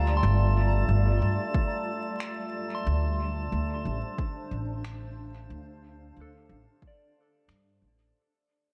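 A straight 4/4 pulse at 91 BPM settles in as a punchy, up-front electronic kick enters at 1.5 s and airy finger snaps with dub echo join in the background at 2.2 s, giving this deep, meditative ambient dub fragment its gentle sway. Under them, a woody, growly upright bass with tube saturation sits up front, while a cloudy granular pad holds sustained chords that move from Gm9 to Dm7 at 2.9 s and a glassy texture of drifting overtones hovers above. A pure, warbling FM synth bell spins arpeggios through chorus, low-pass filtering and dub echo under a filter sweep, all set in a light small-room ambience with vinyl crackle as the passage fades throughout.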